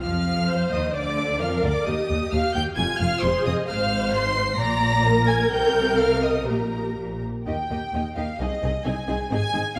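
A quick, lively classical-period movement for string orchestra at 131 BPM in 2/4, played with a rubato feel, it starts in C minor and brightens toward Eb major from 3.7 s in this cheerful passage cut from a longer piece. The violin sections carry the high melody and a second line with smooth, even vibrato that sounds distant, while the cello section gives a focused, close bass and the double basses add a soft-attacked, expressive foundation. The viola section enters at 0.5 s, slightly louder, with close, expressive portamento, all set in the moderate bloom of a scoring stage.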